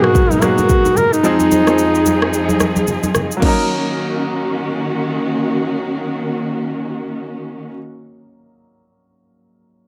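Amapiano with a deep, late-night mood, cut from a longer piece, featuring a solo duduk up front from the start, clear-toned with scooped, folk-style notes and a digital delay, which falls away at 2.9 seconds. Lush bowed strings with vibrato and portamento pump under sidechain, while a worn, natural grand piano sits in the background and carries on alone until 9.9 seconds. An electronic afro-pop kit with a deep kick, crash cymbal, rim click and shaker plays from the start and is joined by ringing acoustic congas at 0.3 seconds, the mix set in light small-room reverb.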